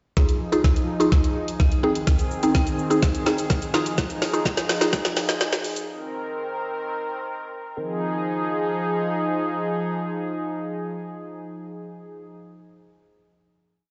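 A short, energetic dance-pop piece in straight 4/4 with a driving feel, built as a single rising build that arrives on a held final chord. The smooth R&B drum kit sits up front with an electronic, produced, tape-warm sound, a knocking kick, woody snare, shaker and warm hats playing a four-on-the-floor beat with a drum fill, and it stops at 5.9 seconds. A mallet-like synth pluck, round and mellow with a fast attack and decaying tail, adds syncopated close-voiced chords treated with chorus, phaser and sidechain pumping until 5.3 seconds. Beneath them a sawtooth analog pad with a soft attack and long release holds sustained chords up front, also pumping against the sidechain, and carries on alone through the final Fm7 chord from 7.8 seconds to the end. The whole is bathed in a lush hall reverb and large studio ambience, with a high-passed, dark top end that sounds as if played on a big system in a bare room.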